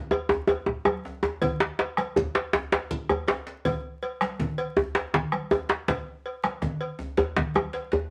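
West African traditional drum ensemble music in a powerful, festive 12/8 with a straight feel, this short cut from a longer piece layers a metallic, close cowbell, a round, dry bombo and medium-tuned congas with thick skins over a pair of djembes. The leading djembe sits loudest, deep and saturated with metal rattles and hard hands, while the second djembe, softer in the mix, adds tight, cracking soft-hand strokes up front. Moderate studio reverb and a layer of vinyl crackle surround the ensemble, and a drum fill arrives at 7.4 seconds to close the passage.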